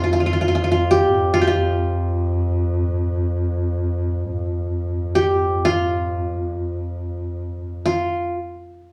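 Stately and warm, this brief fragment of a Turkish makam ensemble unfolds in free time, tuned to A4 = 440 Hz. A bowed double bass holds a steady drone on F2 from the start, its focused, smooth-topped tone carrying vibrato from a single player placed up front. Over it, the qanun spins a melody between F4 and G4, its fingerpicked triple strings giving a bright-edged, acoustic shimmer close to the listener. The two sound like they are playing live together in a small room, wrapped in a moist studio reverb of about 0.9 seconds. The bass drone stops at 8.0 seconds, and the qanun carries on until 8.3 seconds as the passage shifts into a new section.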